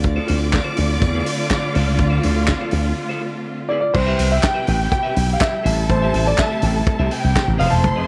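Celebratory and glamorous, this disco cut moves at 123 BPM in a straight 4/4 in C major, tuned slightly below standard pitch, and is taken from a longer piece. Up front, a slap bass with an envelope filter gives a growly, punchy drive, while a dry soul drum kit with a tight kick, medium-tuned snare, dark cymbals, hi-hat, handclaps and crash keeps a mid-forward groove. A close, biting symphonic string section holds lush sustained chords, a distant violin section adds an expressive, vibrato-rich second line above it, and a clean, picked semi-hollow guitar sits in the background as accompaniment. During a break from 3.0 to 3.9 seconds, a concert grand piano with a deep bass enters at 3.7 seconds to take the melody, and from 3.9 seconds the harmony shifts from Dm7 to Cmaj7 and then Am7. The studio ambience surrounds the ensemble.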